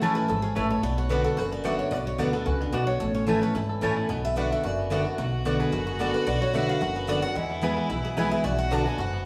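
A bright, full-bodied dreadnought guitar sits up front carrying the melody in this driving, haunting bluegrass excerpt in B dorian, moving at a brisk 221 BPM in straight 4/4 over chords shifting between A, Bm and E. Beneath it, a second picked auditorium guitar handles accompaniment with a mellow body, while a twangy, percussive banjo played with fingerpicks adds a further melodic line from the background. A woody mandolin with double strings adds picked stabs, and a growly pizzicato upright bass anchors the low end throughout. At 5.2 seconds a close, biting fiddle with light vibrato and an airy bow enters on an intense second line. The whole band plays live in one room, framed by a wet stone-room reverb that lends the short passage a spacious, echoing air.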